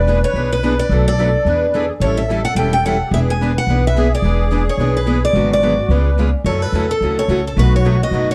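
A brisk swing at 216 BPM in 4/4, with the eighths lilting, drives this charming acoustic string-swing fragment in the jazz manouche tradition, set in E mixolydian and cut from a longer piece. A thumpy, woody upright bass on gut strings sits up front from the first beat, plucked pizzicato and anchoring the harmony as it moves from E7 through A7 and on to a turnaround of G#m7b5, C#7b9, F#m7 and B7. Above it, a bright, boxy parlour steel-string guitar carries the melody, picked with fresh strings and treated with plate reverb, while a reedy musette accordion, close-miked, dry and shimmering with its musette tuning, plays a second line beneath. Two more picked steel-string guitars join at 0.1 seconds as accompaniment: one crisp parlour guitar with audible finger squeak, the other a mellower concert guitar set further back. A moderate club ambience and a dark, warm production give the swinging ensemble a cosy, intimate sound.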